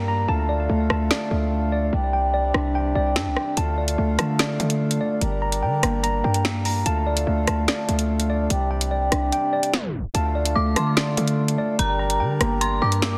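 A dense, heavily limited modern mix with light reverb carries this tense, ominous drill excerpt in D minor, moving at 146 BPM with a half-time feel. A reedy, breathing pedal harmonium holds sustained chords beneath a worn, slightly out-of-tune tine electric piano whose arpeggios come through overdrive, a low-pass filter and delay, giving it a through-the-built-in-speakers character. A punchy, heavy 808-style bass with a sine core and noise layer sits up front from the start, while the overdriven electronic drum kit arrives at 0.9 seconds with a woody snare, bright hi-hats, rim clicks and finger snaps. The kick drops out at 9.3 seconds, and at 9.7 seconds a tape stop drags the track down before the progression returns on D minor. At 10.6 seconds an eerie, inharmonic FM synth bell enters as a second line, detuned and colored by chorus, tremolo and delay.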